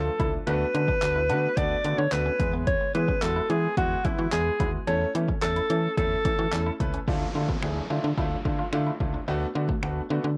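Heard through light reverb with the soft grain of a home cassette recording, this euphoric, carefree dance-pop fragment moves at 109 BPM over a deep house kit of punchy kick, hi-hat, handclaps and finger snaps, with a snappy, metallic FM slap bass pumping up front. A forceful, vibrato-laden alto saxophone carries the melody with tape echo until 6.8 s, over an intimate concert grand piano with audible action noise and long sustain, pumping and cassette-coloured, and a twangy, picked clean electric guitar riff with subtle chorus tucked in the background. At 7.1 s an electronic downlifter arrives as the harmony moves from Bm7/D, E and A/E to Dmadd9.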